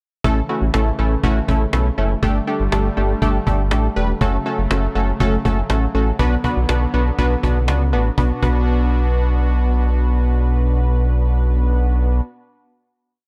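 A straight 4/4 groove at 121 BPM drives this cool, nocturnal synth-pop piece in B minor, where a woody, hard-handed cajon with faint snares plays until 8.6 seconds beneath a deep, pulsing eighth-note analog bass with slides, a punchy, detuned polysynth comping funky eighth-note chords through chorus, and a brassy, warbling vintage pad with vibrato in the background, moving through A, Gsus2, F#m and Bm before a final chord sounds from 8.2 seconds in a dry, gritty mix.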